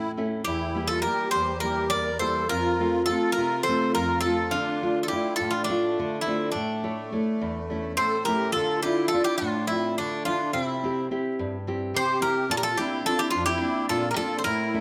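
Close, detailed microphones and a moderate stage reverb give this bittersweet, cool Greek folk excerpt an intimate yet roomy sound, with the tempo gathering speed from around 210 BPM in a straight 7/8 in D minor. Up front, a picked, metallic Greek bouzouki with octave-doubled strings carries the melody, while a reedy, shimmering musette accordion adds a dry second line and a fingerpicked nylon-string guitar supplies deep classical accompaniment. The harmony moves through Edim, F, Dm and A before shifting at 8.6 seconds to a new passage built on Dmadd9, C and Bbadd9.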